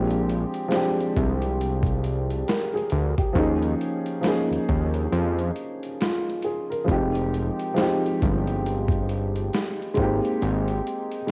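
Lo-fi hip hop with a reflective, hazy mood and a lazy swing, built from a dark, woody upright piano with audible action noise and cassette-tape wear, a fat, detuned sawtooth bass with tube saturation and a filter sweep, and a gritty, compressed sampler-style kit with a thumpy kick and hi-hat, all set in light reverb under vinyl crackle, with a break from 5.1 to 6.9 seconds in this short cut from a longer piece.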